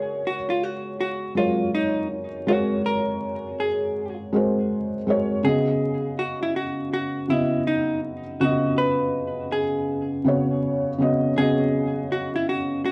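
Hazy and melancholic, this hip hop excerpt moves at 81 BPM in 4/4 with a lazy 63% swing on the sixteenths, tuned to A4 = 444 Hz. A clean, picked hollow-body electric jazz guitar carries the melody over a felt-muted upright piano, whose soft, mellow, intimate tone is colored by cassette tape and audible action noise, both parts sitting up front across the full 12.9 seconds. The harmony shifts from G#9sus4 to C#9sus4 at 5.4 seconds, wrapped in moderate studio reverb and a dark, warm production laced with vinyl crackle.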